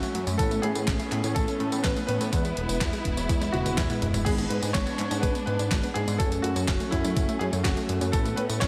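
A straight 4/4 italo disco groove at 124 BPM rests on a clean 12-bit drum machine, playing from the start with a fat snare, handclaps, hi-hat, tambourine, toms and crash cymbal, and a thumpy, sampler-style electronic kick that enters at 0.4 seconds, plus a drum fill between 3.5 and 4.3 seconds. The mood is bittersweet and melodramatic, and a retro, glossy chorused synth bass, blending pulse, sawtooth and sine tones with a filter sweep, anchors the low end. A clear, worn grand piano carries the melody through a diffuse ambient delay, while a distant studio string section holds expressive bowed chords with vibrato and portamento. A very quiet detuned unison pluck traces punchy arpeggios, and a bright, bell-like tine electric piano adds stabs over chords that move from Aadd9 through E, G#dim and F#m. Moderate lush hall reverb soaks the mix in a dreamy haze.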